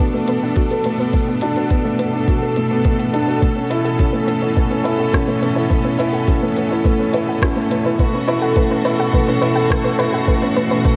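A felt-muted upright piano riff with tape echo sits up front over lush, vibrato-rich sustained string chords, a dark warbling pluck arpeggio with chorus, sidechain pumping and a filter sweep in the background, and crisp hi-hats and rim clicks from an organic electronic kit, before a soft, tape-warm electronic kick enters at 0.6 s to drive this intimate, hypnotic piano-and-strings electronica build-up in B minor at 105 BPM, moving from Bm7 to B9sus4 at 3.4 s in a moderate concert-hall reverb, cut from a longer piece.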